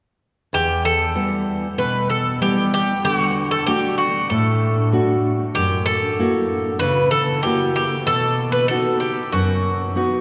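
Bittersweet and moody, this short Greek folk excerpt in E minor moves at a straight 96 BPM in 4/4, with a picked bouzouki carrying a metallic, double-strung melody between F#4 and B4 up front beside a deep, fingerpicked nylon-string guitar accompaniment, both playing from 0.5 to 10.2 seconds through a progression of Em, D, F#7 and B, all bathed in the long, wet reverb of a cathedral-like church or concert hall.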